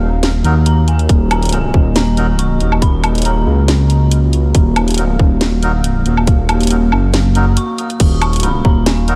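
A lightly reverberant, cavernous mix opens this brief deep dubstep excerpt, its half-time, gently swung feel settling into a meditative mood. A rumbling, detuned saw bass sits up front from the first moment, with a moody analog pad holding sustained chords in the background, its chorused tone slow to bloom and long to fade. A garage drum kit brings a cracking snare, bright hi-hats, crash cymbal and woodblock, while a tight, layered electronic kick lands prominently from 1.1 seconds. Reedy, breathy melodica stabs drift through dub echo, and an eerie, inharmonic FM bell carries the melody with chorus, phaser and echo, warbling in the distance. The bell drops out at 4.1 seconds and returns at 7.6 seconds as a short break begins, all over a single minor chord.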